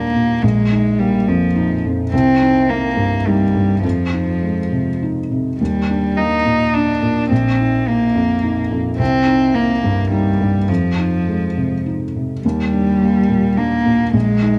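Intimate and tender, this neoclassical piece for piano and strings moves in a rubato 3/4 at about 106 BPM in Eb major, circling through chords such as Cm7, Fm7 and Ebmaj7. A felt-muted upright piano carries the accompaniment with a mellow, hushed tone and audible action noise, while a single bowed cello, played sul tasto with light vibrato and an airy bow, sings a close second line. Both sit up front in a moderate plate reverb, and the passage, taken from a longer piece, returns to its opening material at 12.4 seconds.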